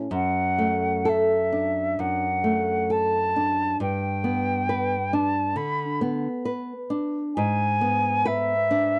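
A silver concert flute carries the lyrical melody between E5 and B5, its pure, metallic tone shaded with vibrato and tongued notes, sounding somehow both up front and distant, entering at 0.1 seconds over a fingerpicked nylon-string guitar. This romantic duo moves in an unhurried rubato 4/4, the small, acoustic guitar voice supplying accompaniment as the harmony passes from D/F# to G and then to G#dim at 7.4 seconds. The dry, close sound of a 1970s-style studio frames this brief warm excerpt from a longer piece.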